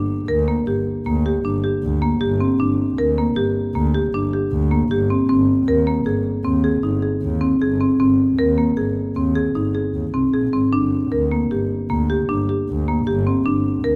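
Hypnotic and restless, this excerpt of contemporary chamber music moves in an uneven 7/4 with a straight feel, circling from G minor to Abadd9 over G and back to G minor. A woody, dark marimba played with medium hard mallets on rosewood bars spins arpeggios up front throughout, while a single bowed double bass, played sul tasto, lays down a rich, floating bass line with a soft attack. Light reverb and close, detailed microphones keep both instruments intimate and clear.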